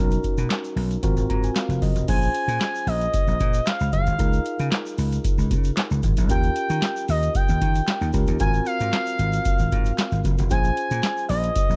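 A straight 4/4 groove at 114 BPM drives this feel-good, danceable slice of early-eighties boogie funk. From about 0.1 seconds a booming analog drum machine sits up front, its dry, deep kick, tonal snare, metallic hats, handclaps and crash cymbal joined by a grainy, bright tube shaker tucked into the background. A punchy, amped vintage slap bass holds the low end, while a clean tine electric piano plays the chords through its built-in speakers and adds a short fill from 1.0 seconds. At 2.1 seconds an expressive portamento lead enters, a smooth, mellow sawtooth voice with a fast attack, sustained notes, vibrato and chorus, moving over lush harmonies such as Bbm9, Db69, Eb9 and Ab13. The dark, warm production keeps reverb to a minimum, so the parts sound dry and close.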